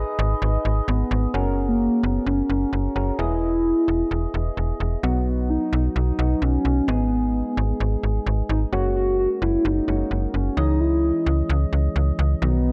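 A straight, steady pulse in common time drives this cool synth-pop passage, cut from a longer piece. The slap-like FM bass sits up front with a snappy, metallic attack that then decays, while soft electric-piano-like synth keys, round and mellow with a gentle chorus, fill in the accompaniment from the start. At 0.9 seconds a hollow, woody clarinet-like synth lead enters with the melody, its sustained, full-bodied tone colored by chorus, phaser, tape echo and vibrato. The harmony moves from G#m through F#add9, Emaj7 and B, then returns to G#m and F#add9 before closing on C#madd9. A lush hall reverb and digital ambience frame the dark production, with a faint mains hum beneath it.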